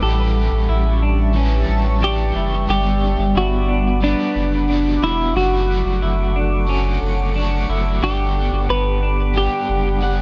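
A straight 4/4 pulse at 90 BPM carries this floating, blissful dream pop excerpt in G lydian, where a clean, fingered semi-hollow electric guitar sings the melody through analog chorus and digital delay over a second picked, compressed semi-hollow guitar's arpeggios, a crunchy, double-tracked overdriven guitar with tremolo, a shimmering, ethereal pad with octave-up shimmer and phaser, and a deep, up-front sine-and-triangle sub bass, while a mellow soft-mallet vibraphone rings in the background from 1.4 s, all moving through A7, Gmaj7 and Dmaj7/F# in a dark production with light reverb.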